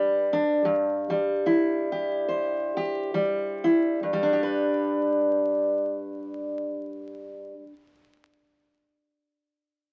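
A full-bodied, jumbo-sized steel-string acoustic guitar plays fingerpicked solo folk up front, in a pastoral mood in G major, tuned slightly sharp to A4 = 444 Hz, with a gentle swing at 65-78 BPM in 4/4. The opening phrase slows over its first 4.0 seconds as the harmony moves from G to C/G, then a second phrase returns to G at 4.0 seconds. The dry, close sound carries the crackle of a very old 78 rpm record, giving this short cut from a longer piece a warm, antique character.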